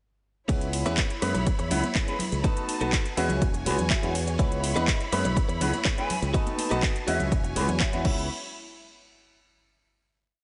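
Groovy and funky, this short filtered disco house piece in C# minor at 123 BPM rides a punchy four-on-the-floor electronic kick, an overdriven house kit with metallic hats and claps, background maracas and congas, a growly syncopated fingered bass, dotted-rhythm chords from a phased grand piano, a gritty clean guitar funk riff and lush sustained strings, with the piano, strings, guitar, bass and percussion pumping through a dreamy reverb-soaked hall until a breathy, distant jazz flute slips in short phrases at 6.0 seconds before a final hit at 8.3 seconds.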